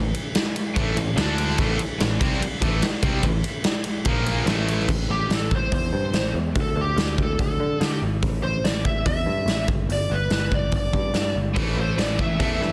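A driving straight 4/4 pulse at 144 BPM powers this aggressive, menacing hard rock passage in A minor, cut from a longer piece. A huge arena drum kit sits up front with a punchy kick and natural big-room sound, while a growly, foam-muted picked bass runs throughout. Three riffing guitars open the track, a bright tight distorted one, a double-tracked overdriven one in the background and a very quiet crunchy one, before dropping out at 4.9 seconds and returning at about 11.6 seconds. From 5.1 seconds, a dark, bluesy distorted lead guitar carries the melody up front over a dense, heavily limited modern master with small room ambience.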